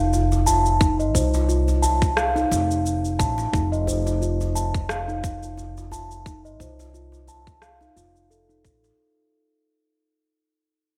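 A round, ringing steel tongue drum, played with soft rubber mallets, spins meditative arpeggios from Eb4 to A5 through a low-pass filter and a filter sweep. It sits over an F7 chord in this organic downtempo fragment at 88 BPM in 4/4, with a light 16th-note swing. Up front, a woody, growly pizzicato upright bass pumps with sidechain beside a tight, overdriven electronic kick, while an overdriven electronic shaker and rim click are re-recorded in a large room and a distant djembe with metal rattles, struck with hard hands, stays in the background. A moderate plate reverb and bright 1980s-style digital production frame the track as it fades out across its full 9 seconds.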